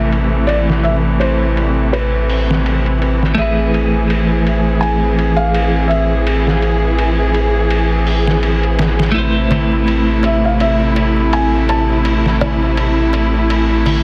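A deep, round dub sub bass sits up front in this melancholic, cinematic trip hop passage, beneath dark, veiled con sordino strings, a felt-muted upright piano melody with tape echo, a clean picked electric guitar under tremolo and a filter sweep, a tense, nasal drone in the background, and a gritty, pitched-down sampler-style kit with filtered hats, ride and snare, while a small clay darbuka joins softly at 9.1 seconds, all in a heavily compressed, radio-like sound with light small-room ambience.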